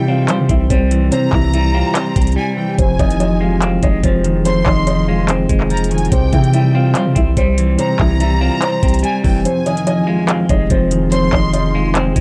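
A semi-hollow electric guitar sits up front with a clean, hollow-bodied tone and a harmonic tremolo, carrying the accompaniment through this menacing, eerie trap excerpt at 144 BPM in a half-time feel, in F minor. Beneath it, a long sustained 808-style bass delivers deep, sine-like notes with a fast attack and mellow decay, while the trap drum kit enters at 0.3 seconds with a knocking kick, metallic hi-hats and handclaps. A felt-muted upright piano plays the melody in a soft, intimate register, and a lush studio violin section bowed with vibrato holds a high second line treated with tape echo. In the background, a deep, dark ambient pad of detuned sawtooth unison with a sub octave and a moving notch sustains the chords through chorus and its own reverb, as the harmony shifts between C and Fm7. A brief break comes from 2.4 to 2.8 seconds, and the kick falls silent from 9.5 to 10.3 seconds, all within a dry, gritty hardware sound.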